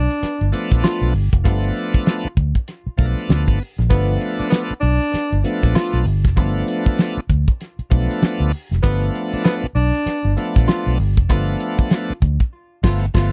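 Funky and strutting, this dry, close 1970s-style funk excerpt at 98 BPM in G mixolydian rides a swung sixteenth feel over a G9 chord, with a cloth-damped, thuddy drum kit of fat snare, tight kick, hi-hat and dark crash, a round, foam-muted fingered electric bass, a bright tonewheel organ shouting overdriven stabs through a slow rotary speaker from 0.5 seconds, and a breathy, distant baritone saxophone adding a second line with vibrato and tape echo, before the band hits an accent at 12.5 seconds.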